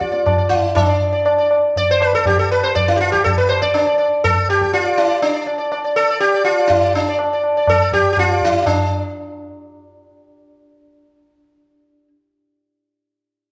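A bright, buzzing sitar carries the melody from the start over low-tuned tabla with a short ring, in a solemn, longing Hindustani passage in raga Bhimpalasi on D at 122 BPM in a straight 4/4. The sitar sits up front, its plucked tone shimmering with sympathetic strings and set in the generous reverb of a recital hall, while the tabla carries a small-room sound. The tabla stops at 8.8 seconds, leaving the sitar alone until this fragment of a longer piece ends at 12.1 seconds.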